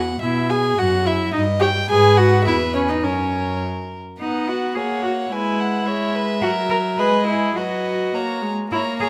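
A rich cello bass and a second violin open together, joined at 0.2 seconds by a nasal, airy-bowed viola up front and at 0.5 seconds by a first violin carrying the melody with light vibrato, all four single players bowing with gut-string, period-style tone in this graceful, cheerful classical-period string quartet movement at a quick 106 BPM in 2/4 with rubato, cut from a longer piece and set in a reverberant recital hall as it moves from its opening section into a second around 4.2 seconds.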